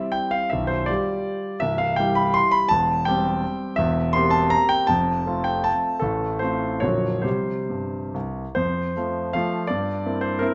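Dotted rhythms drive this graceful, proud romantic dance in 3/4, its rubato tempo ranging between 129 and 178 BPM as it moves from C major to F major at 3.8 s. A solo concert grand piano sits up front with a clear, natural tone, deep bass and long sustain, spanning Bb0 to C6 in a moderate recital hall reverb. A new section begins at 8.6 s, and the 10.5-second passage is cut from a longer piece.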